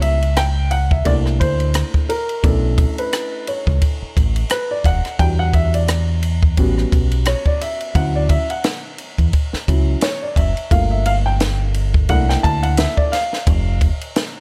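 A swung sixteenth-note groove drives this nocturnal, cool jazz-hop cut, carried by a compact cocktail drum kit with a tight kick, high-tuned snare, rim clicks, hi-hat and dark ride cymbal, all dry and up front. A deep, round dub bass played with the fingers sits close beneath it, while a woody, mellow upright piano with audible action noise and a vintage, intimate character solos over lush extended chords such as C13, Bm11, Em9 and Dmaj9. A small room reverb lends the pieces a snug shared space before the chords drop out at 13.5 seconds.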